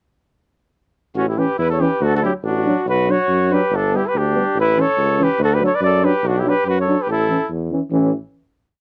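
A bouncing 2/4 pulse at 142 BPM, lightly swung on the sixteenths, drives this short, exuberant Balkan brass piece in A mixolydian, with a clear, vintage tuba up front playing root-and-fifth bass on the main beats from 1.2 s until 8.1 s. Above it, a flugelhorn with vibrato and a smooth top carries a festive, song-like motif melody, shadowed mostly in thirds by a soft-attacked trumpet harmony line, while a distant, roomy euphonium and trombone supply offbeat chords. The close, detailed, nearly dry sound brings out each classical-style brass voice before the tuba, euphonium and trombone hold a final chord from 7.9 s.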